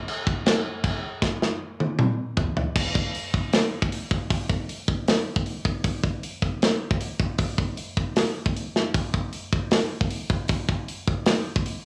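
A straight 4/4 metal groove drives this heavy, aggressive fragment of a longer piece, carried by a tight acoustic drum kit of kick, snare, hi-hat, toms, crash and china that sits up front and mid-forward with a medium-tuned snare and a rolled-off top, breaking into fills from 1.2 to 2.8 seconds and again at 8.7 seconds, all captured as a home cassette recording with a light touch of studio reverb.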